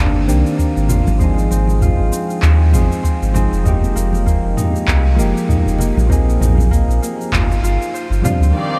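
A round, sine-toned sub bass sits up front in this wistful sunset chillout excerpt, holding deep sustained notes under a gently swung pulse. Soft electric-piano-like synth keys give mellow, decaying chords colored by chorus and a diffuse ambient delay, while a fingerpicked concert harp rings out arpeggios through the same hazy delay. A layered, overdriven deep house kit of handclaps, shaker and toms sounds filtered and roomy, with an analog electronic kick in the background and very quiet, close congas played with soft hands. The harmony drifts from Cm9 through Ab6 and Fm11 to Bb9sus4 and G7sus4. At 8.5 seconds a rich bowed chamber string section with light vibrato arrives, and a bright, glassy harmonics texture with drifting overtones appears in the background at 8.7 seconds.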